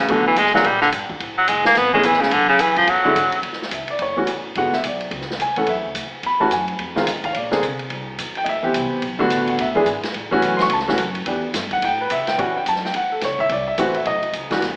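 Heard through an AM-radio filter and a reverberant church or concert hall, this short excerpt of sophisticated, swinging small-group jazz opens with a vintage-toned baritone saxophone soloing up front with vibrato until 3.4 seconds. An up-front grand piano with a natural, warm character comps through to 14.6 seconds over rich, shifting harmony. A woody pizzicato upright bass and an open jazz drum kit with dark cymbals and a boomy kick sit further back in the mix.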